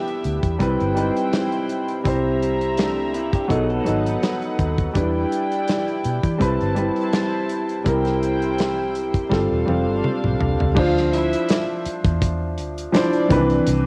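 Swung sixteenths at 83 BPM in 4/4 carry this short excerpt of lush, romantic 1970s-style soul in C major, where an up-front concert grand piano with audible action noise and a mid-forward acoustic drum kit with a tight kick open together over a round, foam-muted fingered electric bass, while dark, reedy strings with a gut-string tone hold a second line, a bright, twangy electric guitar riff flickers in the background from 2.8 to 4.7 seconds, a drum fill arrives at 9.3 seconds, and a mellow soft-mallet vibraphone rings faintly from 11.1 seconds, all with the soft haze of a home cassette recording.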